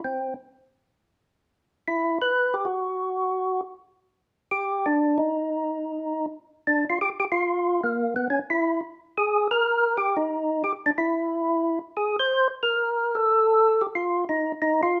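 Jazz with a bluesy, soulful mood and a swung feel, carried entirely by a solo percussive tonewheel organ that sits up front, fat and lightly overdriven, with third-harmonic percussion, vibrato and a slow rotary speaker. The organ stays in its middle register across the fragment, and the passage moves into a new section at 6.6 seconds. A moderate studio reverb gives the sound a touch of room around it.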